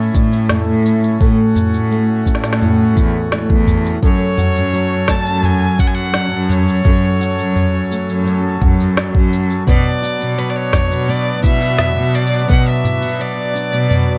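Folktronica at 85 BPM in F# minor, intimate and delicate, with a hand-pumped harmonium breathing reedy sustained chords beneath a dark, thumb-plucked flamenco guitar whose arpeggios carry delay, while a focused, bowed cello with vibrato holds the bass. Up front, a soft electronic kick and an organic electronic kit with a woody, tape-warm snare, cabasa and toms keep a straight 4/4 pulse, and at 4.0 seconds a smooth, even violin enters with a bowed, delayed melody as the chords move from A to F#m and then to Bm at 9.7 seconds. Light reverb surrounds this short cut from a longer piece, and the kick drops out at 12.6 seconds.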